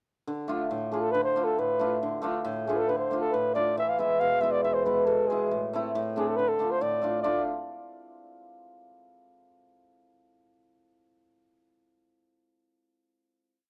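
A bright, shimmering hammered dulcimer opens at 0.3 s with ringing off-beat triad chords, and a breathy, whispered flugelhorn joins at 0.9 s to carry an ornamented modal melody in D dorian sharp4, with vibrato, soft attacks and scooped notes in an intimate jazz style. This festive yet soulful klezmer piece moves at 137 BPM in a straight 2/4 through Dm, E and Am before returning to Dm and settling on a final chord at 7.2 s. Both instruments sit up front in a dry, close 1970s-style studio sound with light reverb and small room ambience.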